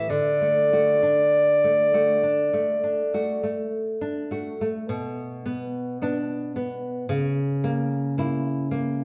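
Tender and warm, this short romantic excerpt pairs a clarinet with a classical guitar at a slow, rubato pace. The clarinet sings a smooth, warm melody up front until 3.7 seconds, while the fingerpicked nylon-string guitar, with its finger squeak, carries the accompaniment through to 9.0 seconds, continuing alone after the clarinet falls silent as the harmony darkens toward a diminished chord. The duo plays live together, bathed in a lush studio reverb.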